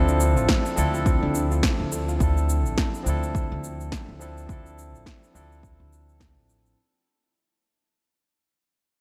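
This sunset chillout excerpt sits at a relaxed 105 BPM in 4/4 with a swung sixteenth-note feel, resting on a single Dm9 chord in D minor. A barky, bright tine electric piano carries the accompaniment, roughened by vintage 12-bit sampler grit and an analog delay. A woody, pizzicato upright bass with steel strings sits up front and dark underneath. A soft, round synth pluck with chorus and delay plays background arpeggios only from 0.1 to 2.1 seconds. Overdriven electronic drums, re-recorded in a large room, pair a punchy snare and shaker with a deep kick that enters at 0.5 seconds. The whole dreamy mix is soaked in moderate cathedral reverb and fades out across its 6.8 seconds, leaving a warm, hazy glow.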